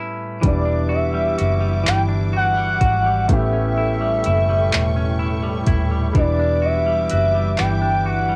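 In a slow six-eight lilt, this late-night, sultry R&B fragment opens with a clean, hollow-bodied electric guitar playing a second line over clear, long-sustaining grand piano chords before the band arrives at 0.4 seconds, moving from Em9 to A7 and back. A soft-kicked electronic kit with metallic hats and handclaps sits up front beside a dark, round, foam-muted bass, while a lush bowed string section holds sustained chords underneath. On top, a gliding detuned sawtooth lead with soft attack, vibrato, chorus and analog delay carries the melody, and the guitar, piano, strings, drums and lead share a cassette-tape haze and light reverb of a home recording.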